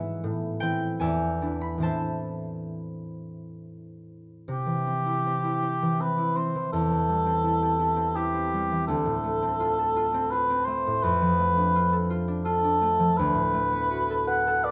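Romantic classical music for cor anglais and harp, this melancholic, solemn fragment of a longer piece moves in a rubato three-beat lilt, as the up-front, fingerpicked concert harp rings out its accompaniment alone until the mellow cor anglais enters at 4.5 seconds with a roomy solo melody touched by light vibrato, all carried by the wet reverb of a recital hall.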